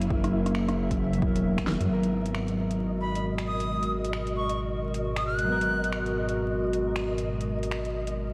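Melancholic and wistful, this future garage excerpt moves at 134 BPM in G# minor, with a 16th-note swing and a dreamy mix soaked in church reverb and vinyl crackle. A warbling, nostalgic pad holds lo-fi chords through chorus, phaser and sidechain pumping, while a menacing detuned saw bass, saturated and up front, pumps underneath with a filter swell. A clean, dark electric guitar adds fingered accompaniment with subtle chorus and delay, and a flickering granular texture glimmers high above. An overdriven deep house kit of finger snaps, metallic hats, rim clicks and a fat snare keeps time, joined by a punchy electronic kick that drops out at a drum fill at 1.7 seconds, just before the harmony shifts from F#7 to G#m9 at 1.9 seconds. From 3.0 to 5.9 seconds, a breathy, bright jazz flute sings a reedy melody with vibrato, chiff and delay.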